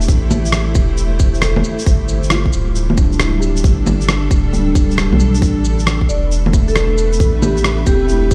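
A soft, felt-muted upright piano and a cloudy granular pad open this rainy, nocturnal future garage excerpt in A minor, both pumping gently against the sidechain while the piano trails tape echo in the background. Beneath them sits a round, deep sine sub bass, up front and mellow, and a sampler-style kit of electronic shaker, bongos, cabasa and rim click that sounds compressed, pitched down and tape-soaked in a small room. A tight, produced electronic kick arrives at 0.1 seconds and drives the swung 4/4 groove at 135 BPM. The harmony moves from Am7 to a bare G7 and back to Am7, with the blurred, detuned pad slowly evolving over it. At 6.1 seconds a vibraphone with soft mallets enters with a metallic, ringing melody colored by slow motor vibrato and tape echo, joined by a faint flickering, grainy texture in the background. The whole mix sits in a digital ambience, heard as if played through a big sound system in a bare room with large studio reverb.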